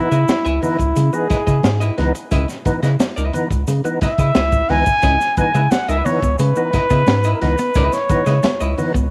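A breathy, whispered trumpet sits up front and close, carrying an intimate, pop-style solo melody through this short funk excerpt, its dark tone softened by light vibrato and a tape echo. Beneath it, a percussive tonewheel organ punches out fat stabs, lightly overdriven with key click, chorus vibrato and a slow rotary speaker, while a hollow-body archtop guitar adds clean, picked accompaniment. A round analog bass, deep and sustained with a fast attack, anchors the groove alongside a crunchy breakbeat kit of punchy kick, high-tuned snare and hi-hat, its top rolled off in a small room. Soft-handed congas play very quietly and a grainy, bright egg shaker sits in the background, and after a break that runs to 5.0 seconds, a compressed clean electric guitar joins with a riff. The mood is hypnotic, with a straight 88 BPM groove resting on a C#m9 chord in C# minor, framed by light reverb and small room ambience.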